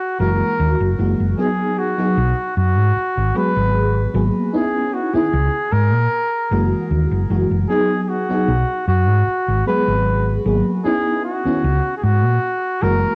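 A straight, unhurried 4/4 pulse carries this dreamy, woozy vaporwave fragment, where a distant, roomy flugelhorn sings a classical-style solo line through tape echo from the first moment. At 0.2 seconds a soft, full-bodied FM electric piano joins with chorus-thickened chords cycling through F#9, B6, G#m9 and C#m9, while a dark, round hollow-body short-scale electric bass, fingered and up front, anchors the harmony beneath. A worn cassette-tape character with warbly pitch drift and light studio reverb gives the sound its woozy sway.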